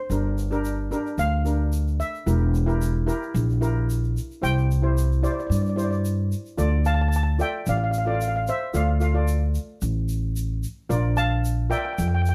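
Brooding and cool, this calypso cut from a longer piece moves at 111 BPM in a straight 4/4, set in D minor. A double seconds steel pan, played with soft rubber sticks, carries the melody with a mellow, shimmering tone, taking a solo over the first 6.6 seconds. A second double seconds pan, struck with medium rubber sticks, supplies an airy accompaniment beneath it, moving through Gm, Edim and C before the harmony settles on Dm at 6.6 seconds and reaches Bb near the close. Up front, a pizzicato upright bass with steel strings gives a woody, growly foundation. A close tube shaker adds a grainy, bright texture low in the mix, and light reverb wraps the whole in a dark production.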